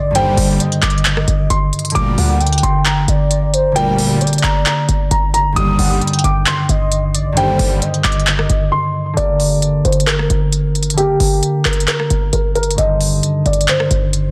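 A half-time trap groove drives this eerie, hard-hitting hip hop fragment, built on an up-front electronic drum kit of crisp hi-hats, handclaps and rim clicks roughened by overdrive and 12-bit sampler grit. Underneath, a short, punchy 808-style bass with a sine body and a noise layer hits tight and decays quickly, while a fingerpicked concert harp supplies ringing acoustic accompaniment. The melody comes from a dark, boxy concert grand piano with short sustain, filtered and touched with digital delay, joined by a second line from a velvety sawtooth synth lead with chorus, vibrato and portamento that drops out at 9.1 seconds. A fat, bold, detuned polysynth adds bright, ring-modulated stabs until 7.8 seconds, and a brief break leads into a new section at 9.2 seconds. The dry, dense, heavily limited mix sits over harmony that alternates between two brooding minor chords.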